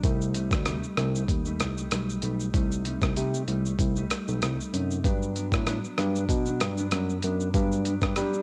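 The recording is a home cassette session, set in a digital ambience. This sunny, laid-back stretch of indie and bedroom pop moves in 4/4 with a light swing on the sixteenths. A lo-fi sampler-style drum kit stands up front, its compressed, pitched-down, muffled hits drawn from a thumpy kick, hi-hat, rim click and shaker, carrying a tape-warm cassette tone. The bass line comes from a barky tine electric piano, also placed prominently, lightly overdriven through a combo amp with tube saturation and analog chorus. Beneath them, a dark, clean electric guitar plays fingered accompaniment, compressed and colored by chorus, vibrato and cassette tape. All three parts play throughout, with the harmony shifting from Cm6 to Gmaj7 at 5.0 s.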